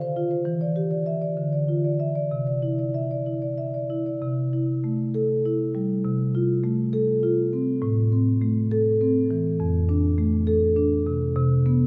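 Bathed in a dark, wet church reverb with a 3.8-second tail, this flowing, warm excerpt from a contemporary classical piece features a solo marimba played with soft mallets, mellow, round and smooth up front, ranging from F2 to F5 in a rubato 6/8 at about 62-69 dotted-quarter beats per minute in C major, tuned to A4 = 437 Hz, stating its opening idea twice as the harmony drifts from Em7 and Dmadd9 through C6, F/C and Am before settling on a Cmaj7 with its third omitted at 11.4 seconds.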